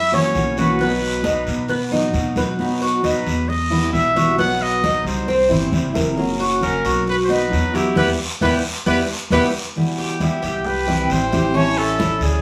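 A punchy solo trumpet with vibrato and a smooth top carries the melody of this danceable Cuban son and guajira piece, cut from a longer performance in E harmonic minor at 134 BPM in a straight 4/4. Beneath it, a Cuban tres with metallic double strings plays arpeggios, while a fingerpicked dreadnought acoustic guitar with old, woody strings fills in the accompaniment. A dark, thumpy pizzicato upright bass on gut strings anchors the low end, and high-tuned congas played with hard hands sit in the background alongside a raspy guiro. The band hits an accent together from 8.0 to 9.8 seconds, and at 10.2 seconds an airy silver concert flute with a crisp attack and a slightly unsteady tone enters with a second line. The group sounds as if playing live in one room, with a wet studio reverb lending the whole a warm sheen.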